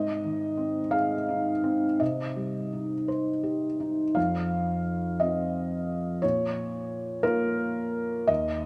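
A felt-muted upright piano plays alone, soft, mellow and intimate with audible action noise up front, in a reflective, wistful neoclassical minimalist excerpt in F minor, moving in a rubato 6/8 at 57 BPM through Ab, Cm, F5 and Bbm chords, shifting into a second section at 4.2 seconds within a moderate concert hall reverb.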